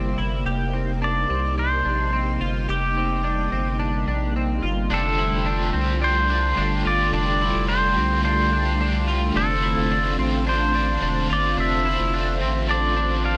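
Floating and ethereal, this dream pop excerpt drifts over shimmering, vintage string-machine violins holding sustained chords, a bright, twangy twelve-string electric guitar picking arpeggios through analog chorus and delay, and a round, deep analog bass up front, while a clean pedal steel guitar slides in with the melody at 1.0 seconds and a biting overdriven guitar with tremolo joins at 4.9 seconds, in a dry, gritty hardware recording with light reverb.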